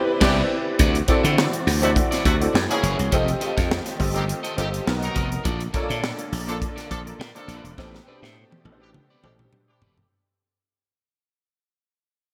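A band accent opens this excerpt of polished 1980s jazz-funk pop, then the music fades out over the remaining seconds, upbeat and glossy at 103 BPM in 4/4 with a light sixteenth-note swing. A growly, punchy slap bass sits up front beside a crisp, airy fusion drum kit with a high-tuned snare, the drums closing on a fill from 7.8 seconds. A concert grand piano with audible action noise and deep lows carries the accompaniment through an ensemble chorus, while a tight horn section with light vibrato plays a vintage-flavored second line. In the background, a slightly broken-up electric guitar picks a riff with subtle chorus, and a lush, bowed string section holds very quiet sustained chords. The harmony slides through rich extended chords from Cmaj9 to Am11, all set in a moderate plate reverb and bright digital production typical of the 1980s.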